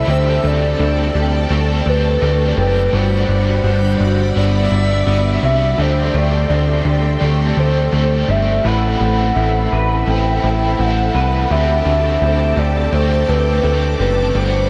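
Dream pop at 84 BPM in 4/4, ethereal and haunting, cut from a longer piece and soaked in a moderate cathedral reverb, moving through D7sus4, Gmaj7 and Amadd9. A warbling, detuned lead with vibrato, chorus and diffuse ambient delay carries the melody over sustained, mellow string-machine violas, a bright, double-tracked overdriven guitar with tremolo, and lo-fi, slightly broken-up guitar arpeggios sitting in the background. A punchy, funky analog bass with a filter pluck sits up front, while a very quiet reversed, granular swelling texture drifts in from 0.4 to 6.1 seconds and returns at 13.1 seconds.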